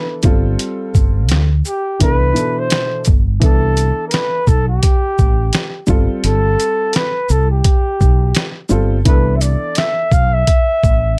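A breathy flugelhorn and a dark upright piano open this relaxed jazz-hop excerpt together, the horn carrying a soft-attacked, whispered melody with light vibrato while the woody, slightly detuned piano supplies vintage accompaniment with audible action noise. Almost at once a round, punchy fretless electric bass joins, sitting up front with an ensemble chorus on it, alongside a gritty, pitched-down boom bap drum kit of thumpy kick, medium-tuned snare, hi-hat and shaker with a compressed, tape-warm sampler character. The groove has a swung sixteenth-note feel, and the harmony moves between G9sus4 and Cmaj13. The piano drops out at 10.0 seconds, leaving horn, bass and drums to close the passage. The mix is dry and close, with the drums and bass pushed forward and the flugelhorn sounding both intimate and roomy.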